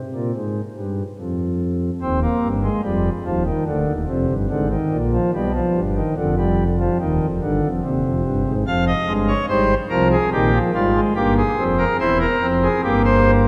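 This is a baroque-style classical fugue in four parts, written for pipe organ and carrying a serious, solemn mood in a steady, straight four-four. A single pipe organ plays throughout from 0.1 seconds to 13.5 seconds, voiced on a cornet solo stop with a romantic voicing whose nasal edge sits up front in the sound. The parts span a deep range from D1 up to F5, so the music reaches from very low notes into the upper register. The harmony moves from an unaccompanied opening through Cm/Eb, Dm7b5 and G, then settles into Fm and Fm11 before closing on C/E, leaving the passage poised and unresolved as it is cut from a longer piece. A wet church reverb with a 3.1-second decay surrounds the organ, lending the counterpoint a cavernous, lingering halo.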